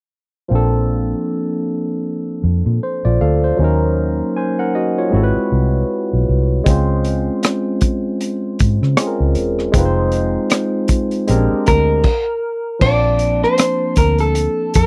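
Sensual and warm, this neo-soul R&B passage, cut from a longer piece, moves with a swung sixteenth-note feel over lush chords such as Bbmaj9, Ebm7, Dbmaj7 and Bb13. A bright, barky tine electric piano carries the accompaniment from the start, lightly overdriven and colored by phaser, beside a dark, round, foam-muted electric bass that sits up front with an amped, vintage tone. At 6.7 seconds a crunchy breakbeat kit arrives, gritty and saturated with dark cymbals, a punchy kick, hi-hat and rim clicks, its top end rolled off like a small room. An electric guitar through a small old amp takes the melody at 11.7 seconds, slightly broken-up, picked and lo-fi, with a slapback echo. After a brief stop at 12.0 seconds the harmony returns to Bbmaj9 for a new section, all captured in a dry, close 1970s-style studio sound.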